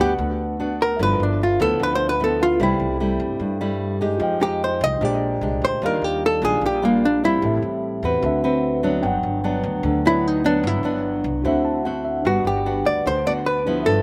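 A sunny, romantic bossa nova in G major at 149 BPM opens with a dark, clean, compressed hollow-body jazz guitar taking an up-front picked solo over fingerpicked nylon-string guitar, complete with finger squeak, and a mellow tine electric piano, all three touched with slapback echo. A woody, growly upright bass, played pizzicato, anchors harmony that moves from Gmaj7 through Fm9, Bb13 and Ebmaj9 before settling back home. The lead guitar pauses at 7.6 seconds and returns at 10.1, and the electric piano slips in a brief fill at 11.4 in this dry, roomless outdoor sound.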